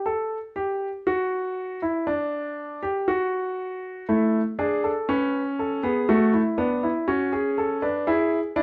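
Heard through a moderate stone-room reverb, a warm, present grand piano sits up front with long sustain and plays alone through this joyful, elegant excerpt of a classical baroque-style four-part fugue in straight 4/4, opening unharmonised before moving through A, Bm7/A and E7 from 4.1 seconds.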